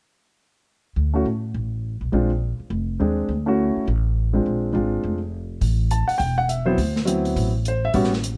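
A woody, growly pizzicato upright bass opens this sophisticated, swinging jazz piano trio excerpt at 1.0 seconds, joined almost at once by a polished, present concert grand carrying the melody over chords moving from D5 through Bb9 and Dmaj9. At a brisk 207 BPM in 4/4 with a swung eighth-note feel, the bass and piano sit up front in a light reverb. At 5.6 seconds a dark, smooth drum kit with hi-hat, snare and a boomy kick enters quietly as the harmony shifts to A5 and D13.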